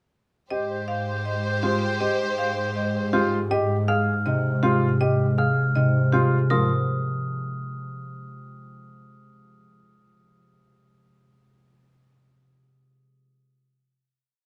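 Hypnotic and bright, this short minimalist classical piece in Ab major pulses at 160 BPM, with a woody hard-mallet marimba and a dark, mellow grand piano repeating short cells over long bowed double bass notes, a distant oboe pulsing notes that swell and fade and a lush violin section holding swelling notes above until 3.3 seconds, a ringing up-front harp entering at 1.6 seconds, and a bell-like glockenspiel joining at 3.9 seconds, all in light reverb before a closing chord.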